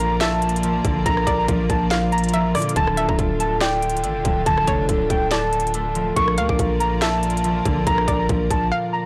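Hard-hitting and melancholic, this half-time trap excerpt sets nostalgic, warbling lo-fi synth keys with chorus and delay over a hollow, nasal square-wave pluck, a ringing fingerpicked concert harp and clear, bowed symphonic strings with light vibrato, moving from Bb to Dm and back to Bb. Underneath, a growling, buzzy 808-style bass and a trap kit with a hard-clipped kick, sharp snare and crisp hats play until the drums stop at 8.6 seconds and the bass at 8.7 seconds, leaving a brief silence before 9.1 seconds. The dry recording is blown-out and overdriven.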